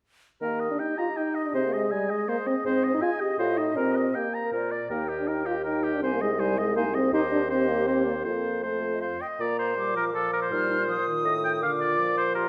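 From 0.4 seconds a full wind quintet launches a cheerful, lively classical-period movement in a quick triple metre, with an airy concert flute carrying the melody in the background, a warm, smooth-topped oboe singing the second line up front with light vibrato, a mellow French horn and a distant clarinet filling in the accompaniment, and a dark bassoon anchoring the bass, all set in a moderate recital-hall reverb as the music shifts key at 7.1 seconds and moves into a new section at 9.4 seconds before this passage, cut from a longer piece, breaks off.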